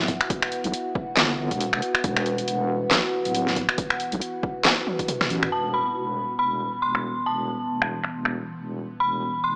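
Deep dubstep at 138 BPM in a half-time feel with swung 16ths, meditative and cavernous, this excerpt is cut from a longer piece and sits on an E5 chord. An overtone-sweeping drone of sawtooth and sine holds sustained chords from the start, its resonant, moving overtones shaped by slow attack, long release, chorus, phaser and built-in reverb, and a filter sweep runs across it from 5.5 seconds on. Beneath, a heavy square-and-sine wobble bass sustains low and compressed, mellow under its chorus. The dubstep kit sits up front with a deep snare, bright hats, toms, handclaps and finger snaps, all overdriven, joined by a punchy, overdriven electronic kick that drops out at 5.1 seconds as a drum fill leads into the second half. There an eerie, inharmonic FM bell takes the melody up front, dark and detuned, with decaying notes, chorus, 12-bit sampler grit and dub echo, all set in a lush hall reverb heard through a small-speaker tone.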